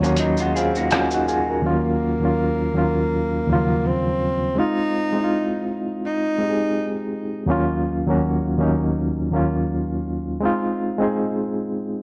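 A swung 82 BPM lo-fi hip hop groove in Eb dorian opens with muffled, pitched-down sampler drums of hi-hat, rim click and shaker alongside a slightly broken-up electric guitar with spring reverb and analog delay, both gone by 1.6 s, while a reedy electric piano with fast tremolo carries Ebm9, Fm7 and Ebm7 chords through the whole 12-second extract and a breathy, intimate tenor saxophone sings a mellow, scooped melody from 1.7 to 7.1 s, all bathed in plate reverb and warbling cassette wear for a nostalgic, melancholic mood.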